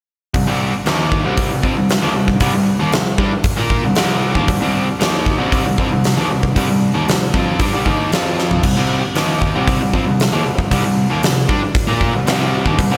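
Classic rock at 116 BPM in a straight 4/4, this short cut from a longer piece feels confident and driving. A distorted electric guitar, bright, picked and compressed, carries the riff together with an overdriven semi-hollow guitar that sits in the background with a warm hollow-body tone. A bright baby grand piano takes the bass line in its low register, its tone brilliant and natural. Up front, a huge arena drum kit hits with a punchy kick, fat snare, toms, hi-hat and bright crash cymbals, and a drum fill breaks in at 8.4 seconds. The harmony rests on C5 power chords, moving briefly to F5 at 8.1 seconds before returning to C5 at 8.6 seconds. A moderate, lush hall reverb gives the whole a big arena sound.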